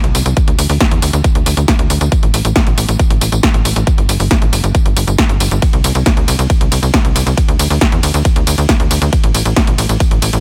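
Driving and bittersweet, this uplifting trance excerpt runs at 137 BPM in straight 4/4, built on a tight, nasal sawtooth-and-square sequencer bass with a plucky filter and sidechain pumping, a punchy analog drum machine of hi-hat, ride, snare and tambourine that pumps on its hats, cymbals and percussion, and an overdriven, layered electronic kick that enters at 0.4 seconds, all up front in a dry mix with little reverb.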